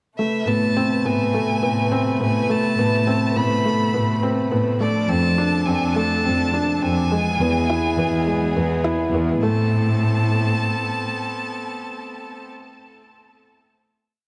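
A felt-muted upright piano, mellow and intimate with audible action noise, plays an eight-step arpeggiated riff through digital delay in this cinematic, moving piano-and-strings electronica piece, while a dark, bowed chamber cello section carries an off-beat bass up front, a veiled con sordino string quartet holds sustained chords, and a clear, focused solo violin, distant and also touched by delay, sings arching motif-based phrases, until the harmony arrives on a final chord at 9.4 seconds and the piano carries on alone from 12.5 to 14.2 seconds in a small, lightly reverberant room.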